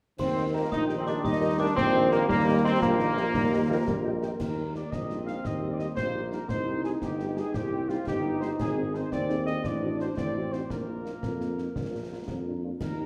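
A rousing, spirited military-style march for wind band in a straight 6/8, heard as a cut from a longer piece, opens at 0.2 s with a bright trombone section holding sustained chords over a roomy, distant tuba bass with light vibrato, while concert snare drum, clash cymbals and concert bass drum sound acoustic in a live room. Supporting lines come at once from a dark euphonium with vibrato and a smooth top, an airy flute section tongued in the background, and a metallic, bell-like glockenspiel struck with hard plastic mallets, its ringing tone vintage and band-limited. Just after, a trumpet section carries the classical-style melody with a shadowy, far-off quality, and a very quiet, tight French horn section fills in accompaniment beneath it. The euphonium drops out at 4.0 s, and the flutes and glockenspiel stop at 4.4 s, leaving the brass and drums to drive a second passage whose harmony moves through Cm, Ab, Adim7 and Bbsus4 before landing on Bb. 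A wet recital hall reverb gives the whole band a spacious, concert-hall sheen.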